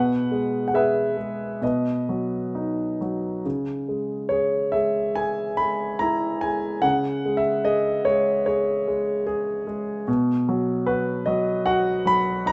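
A gentle halo of light reverb surrounds this recording, and its upper register sounds softly rounded. It is a short cut from a longer classical piece for a single warm concert grand piano, placed up front and carrying a deep bass. The mood is reflective and melancholic, moving at roughly 63-77 BPM in 4/4 with a free, rubato feel. The opening chords move from E over B to B before the music settles into C# minor at 3.4 s. There, the harmony moves through C#m and C#madd11 before returning to B, with the solo piano spanning B2 to B5 until the passage ends at 12.5 s.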